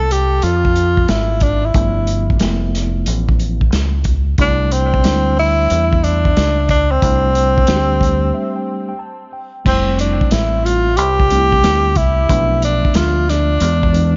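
A breathy, subtoned tenor saxophone with light vibrato and scooped notes carries the melody up front through analog delay, over a round, punchy dub bass, a muffled vintage drum kit with dark cymbals in a small room, and a mellow tine electric piano that enters at 1.7 seconds, in this cool, warm jazz-hop excerpt at 91 BPM in C major with a 16th-note swing.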